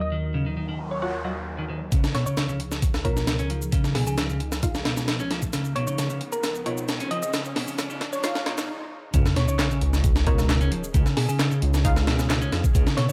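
Breakbeat at 133 BPM, funky and raw, opening on Ebmadd9 as a tine-like thumb-piano-style synth pluck with telephone tone and delay, a swirling phased analog pad with sidechain pumping, a dark, clean picked electric guitar riff and muted dub chord stabs gather under filter sweeps and electronic noise sweeps, risers and sub drops, before a gritty, pitched-up sampler-style breakbeat kit with thumpy kick and high-tuned snare, joined by tape-warm electronic shaker and handclaps, drives a build-up over Dbadd9 from 1.9 seconds with a drum fill and a brief stop, leading to a drop at 9.1 seconds where a deep, rumbling detuned saw bass arrives up front with an impact.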